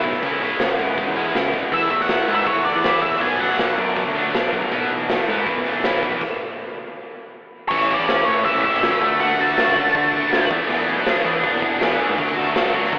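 A jangly, carefree indie rock excerpt at 161 BPM in E mixolydian, where a background overdriven stack guitar with lush chorus and a bright, scooped high-gain guitar with distortion, chorus and tape echo drive riffs over a growling, overdriven picked bass and an up-front, gritty garage drum kit with a punchy kick and a pumping stone-room sound. A dark octave-fuzz lead guitar with tape echo sings its melody at 1.7 seconds and again at 7.7 seconds, after a full stop at 6.2 seconds leads into a new section moving from A to Dmaj7 and E5. The whole mix is dreamy, soaked in a cathedral reverb and filtered to a telephone-like sound.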